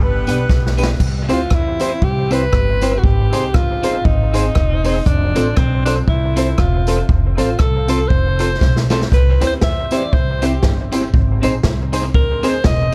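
A bright alto saxophone with vibrato carries this cheerful, joyful ska cut, taking a pop-style solo from 1.3 seconds onward, its lines trailed by dub echo. Before it arrives, a distant, roomy horn section with light vibrato and octave doubling states the melody briefly, also through dub echo, over a G chord before the harmony moves through C, Ab and F. Underneath, a woody, dark pizzicato upright bass holds down the bass line while a clean, picked electric guitar plays accompaniment. A swinging big-band drum kit sits up front with a punchy kick, medium-tuned snare, rim clicks, hi-hat and crash cymbal, with drum fills around 0.5 and 8.6 seconds. A slightly detuned upright piano adds stabs with dub echo in the background, joined by a jingly, vintage tambourine, and a small room ambience surrounds the mix.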